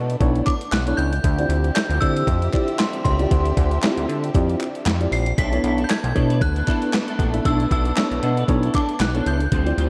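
Early-eighties boogie funk at 116 BPM with a swung sixteenth-note feel, this slick, funky clip is drenched in dreamy plate reverb and drifts over Bm11 and Dm11 chords. Up front, a crisp 8-bit drum machine lays down a thumpy kick, a medium-tuned snare, hi-hat and handclaps, its overdriven sound re-recorded in a large room. Beside it sits a glossy, nasal synth bass built from pulse and sawtooth waves, with a filter pluck, a moving notch and chorus. A worn, slightly out-of-tune tine electric piano plays lush chorused accompaniment through a combo amp. Rich, bowed studio strings with vibrato hold sustained chords in the background, while an inharmonic FM synth chime rings out the melody high above, joined by a very quiet, close and dry group handclap. At 5.4 s a dark, picked clean electric guitar enters with a chorused riff.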